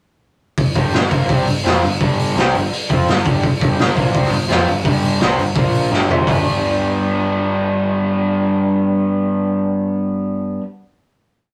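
A rough rehearsal-room sound with saturated grit and moderate reverb frames this short, swaggering garage rock piece, where a punchy, up-front drum kit with a rolled-off top drives hi-hat, kick, snare and toms into a fill just before 6.3 seconds, a bright, overdriven, double-tracked guitar picks a power-chord riff from G5 through Bb5, and a growling, overdriven electric bass doubles that riff in driving eighth notes until both ring out on a final G chord that holds to about 10.6 seconds.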